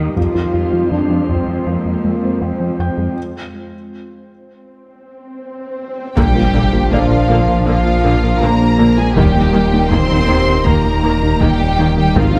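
This hybrid orchestral and electronic film score, cut from a longer piece, feels vast and futuristic. It opens on a glassy FM pad with ensemble chorus and built-in reverb, very quiet arpeggios from a detuned, wave-folded unison pluck, a fat analog bass riff and a close cello section. A felt-muted upright piano with audible action noise and digital delay adds intimate texture, and a punchy French horn section holds very quiet chords, while heavy-stick taiko hits land briefly near the start. The harmony falls away into a break at 3.2 s, and an electronic swell from 5.3 s leads into an impact at 6.2 s, where the taiko returns and the orchestra arrives in full: a focused violin section with vibrato carries the high melody over an even second violin line, with violas, expressive double basses, a clear, vintage trombone section and a mellow tuba beneath. A deep, saturated sine sub bass anchors the low end, and the recording sits in a moderate scoring-stage reverb.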